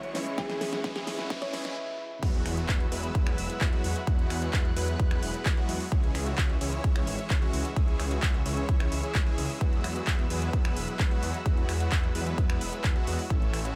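A lightly reverberant, punchy mix opens this anthemic, uplifting festival progressive house excerpt at 130 BPM in E major. From the start, a huge detuned supersaw riff under low-pass filtering and tape colour, thick pumping saw bass, a dark bowed string section behind, and an up-front electronic kick join a glassy wavetable pluck melody, background baby grand piano and an overdriven pop drum kit fill to drive a build-up with a riser and swell that halts at 1.8 seconds. The drop lands at 2.2 seconds with an electronic impact as the supersaw, bass, strings and kick carry on, all moving between C#m and Eadd9.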